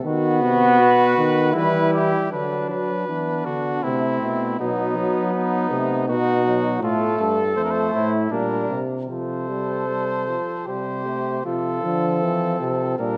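A mellow trumpet with light vibrato and a soft attack carries the melody up front in this stately yet lively classical brass canzona at 79 BPM in 3/4, joined throughout by a dark, smooth-topped second trumpet, a clear but distant trombone accompaniment and a warm, up-front euphonium bass, all settling into F major from 6.8 s within a moderate recital-hall reverb in this passage cut from a longer piece.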